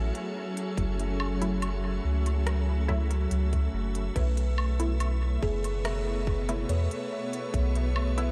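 Meditative and hazy, this ambient dub excerpt drifts at 71 BPM in 4/4 with a straight feel, resting on a single F#m7 chord in F# minor. A soft, organ-like pad holds sustained chords throughout, its pure, full-bodied tone thickened by ensemble chorus and its own reverb. Beneath it, a deep, round sub bass sits up front, while a buzzing kalimba with a woody, ringing pluck traces arpeggios in the background through dub echo. An organic electronic kit with crisp hats, rim click and woodblock enters at 0.1 seconds, joined at 0.8 seconds by a tight, tape-warm electronic kick, both re-recorded in a large room. From 1.4 seconds a muted, filtered chord stab adds short, chorused hits soaked in dub echo, and light reverb softens the whole mix.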